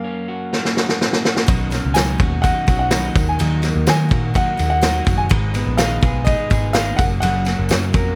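A saturated, gritty vintage drum kit sits up front and opens with a fill at 0.5 seconds in this bright, youthful jangly indie pop excerpt at 125 BPM in F# major, where an intimate upright piano with audible action noise carries the melody over slightly broken-up electric guitar arpeggios with slapback echo, joined at 1.5 seconds by a shimmering, octave-doubled twelve-string acoustic, a round, punchy foam-muted electric bass and a jingly tambourine, with little reverb.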